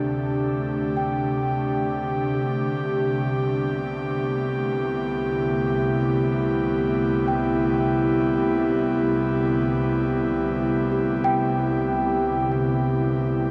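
An airy, breathy pad sits up front in this ambient passage, holding sustained chords with a slow attack, long release and a shimmer of chorus. Beneath it, an organ-like drone hums very quietly with a warbling, vintage, detuned character, while a warm studio cello section plays the low bass line, bowed softly with light vibrato. A large celesta enters at 1.0 s with delicate, bell-like arpeggios from soft felt hammers, ringing in the background through its delay. The celesta and cellos both fade in gradually over the whole 13.5 seconds, and the harmony moves from D7sus4 to Cmaj7 at 2.5 s. Drifting in free time inside a huge, wet reverb, this fragment of a longer piece feels weightless and warm.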